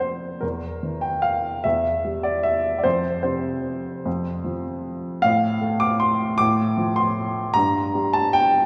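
A clear, woody upright piano plays alone in this elegant, graceful classical waltz, its polished tone sitting up front as it moves through Em7b5, F5, F/A and Gm across a span from E2 to D6. The triple-metre pulse is uneven and freely stretched with rubato, and the instrument rings out in a lush church reverb that lingers for 3.4 seconds. The 8.7-second passage is cut from a longer piece.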